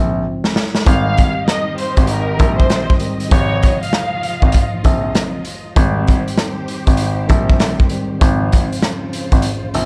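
Nostalgic and warm, this boom-bap hip-hop excerpt moves at 98 BPM with a swung 16th feel in Ab major, drifting between Dbmaj7 and Abmaj7 chords. A dark, intimate baby grand piano holds the low bass up front with audible action noise. Behind it, a worn, slightly out-of-tune tine electric piano with cassette-tape coloring sits in the background. A gritty, saturated acoustic drum kit in a small pumping room comes in with a fill, bringing a punchy kick, a medium-tuned snare, rim clicks and hi-hat. A distant, lush violin section sings an expressive vibrato melody with digital delay from 0.9 to 4.7 seconds over bowed background string chords with portamento, and the passage closes on a break at 9.4 seconds.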